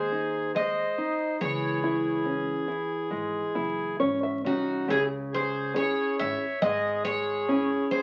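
Fado-style ballad in C# harmonic minor, unfolding at a slow, rubato 69 BPM in 4/4 with a longing, mournful mood. A picked twelve-string acoustic guitar carries the melody up front, its shimmering, octave-doubled tone having an auditorium-like glow, while a reedy, hollow accordion sits close beside it as a second line. Underneath, a boxy, fingerpicked nylon-string guitar supplies the accompaniment and steps forward with a fill from 3.6 to 4.9 seconds, and a woody pizzicato upright bass with steel strings sits low in the mix until 7.7 seconds. The harmony moves from G# to C#m, and the passage shifts into a new section at 4.9 seconds. Everything is bathed in a wet studio reverb and the crackle of a very old 78 rpm record, giving this cut from a longer piece a faded, antique character.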